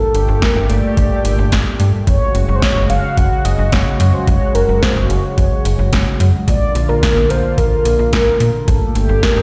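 Heard through a big sound system in a bare room, this short cut from a longer synth-pop track carries a light stone-room reverb. A bright, upbeat groove in straight 4/4 is driven from 0.1 seconds by an analog electronic drum machine, up front in the mix, with a deep kick, punchy snare and metallic hats that have been re-recorded in a large space. Alongside it, a slap-like FM bass sits equally forward, snappy and digital with a fast attack that quickly decays. From the very start, a shimmering, retro pulse-width pad holds sustained chords moving from Gmadd9 to Gbsus2, then Bb and back to Gmadd9, its detuned, chorused tone swimming in plate reverb. On top, a mellow, horn-like lead sings the melody with a round, soft-edged voice, colored by wave-folding, a filter sweep, vibrato, chorus, digital delay and plate reverb.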